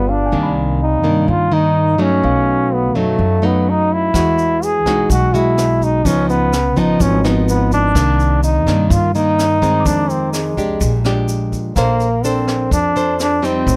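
A dry bossa nova at 126 BPM with a sunny, sophisticated mood, cut from a longer piece, where a bright, punchy trombone with light vibrato carries the jazz-style solo melody up front over fingerpicked nylon-string guitar and a woody pizzicato upright bass, while a mellow tine electric piano sits in the background, a vintage brush drum kit with a tight kick, hi-hat and rim click enters at 4.1 seconds alongside a grainy egg shaker, and the chords move from Cm9 through Emaj9 and Db9 to settle on Bbmaj9.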